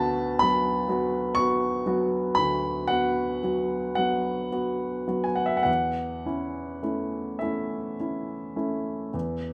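A baby grand piano opens this brief fragment of a romantic nocturne, sounding on a B minor chord over D before settling onto A major over E at 5.7 seconds. The mood is serene and dreamy, moving very slowly in 12/8 at around 34-42 beats per minute counted in dotted quarters, with a flexible rubato feel. The solo piano spans a broad register from deep D2 up to C#6, and its tone is warm, natural and placed up front. Close, detailed microphones capture the instrument intimately, while a moderate recital hall reverb lends a soft halo around each note. The passage lasts about 9.5 seconds and is cut from a longer piece.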